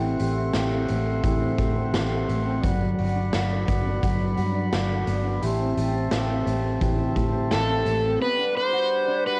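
Dreamy and ethereal, this dream pop excerpt drifts between Am7 and Gmaj7, with a distant, roomy brass section holding sustained chords alongside a dark, clean electric guitar whose arpeggios are coloured by analog chorus and delay. A round, foam-muted fingered bass sits up front, and a gritty, saturated garage kit with a boomy kick and a pumping room sound comes in at 0.2 seconds, while a filter sweep runs until 8.2 seconds. At 7.5 seconds an overdriven slide guitar takes the melody as the loudest part, and the home cassette recording carries a moderate reverb.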